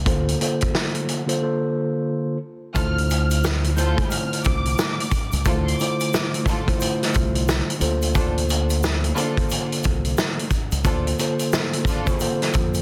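A swung 89 BPM boom-bap groove in 4/4 and D minor drives this gritty, dark hip-hop excerpt, where a saturated vintage drum kit with a tight kick sits up front beside a round, punchy dub bass and a mellow, filtered tine electric piano moving from Bbmaj9 to Dm9, with a break at 1.4 seconds, before a distant, lush violin section with portamento sings a high melody from 2.8 to 6.3 seconds over earthy, tape-echoed string stabs in the background and a very quiet, grainy tube shaker, all in a dry, dense, heavily limited mix.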